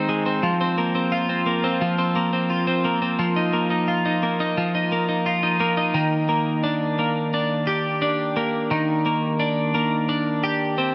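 A bright, twangy twelve-string electric guitar plays alone and up front in this dreamy, blissful dream pop excerpt in Eb major at 87 BPM, its clean picked notes coated in lush chorus and tape echo. A huge ambient reverb with a long 8.5-second tail softens the dark-topped sound as the harmony drifts from Fsus4 to Bbsus4/F before settling on Ebmaj7 at 5.9 s.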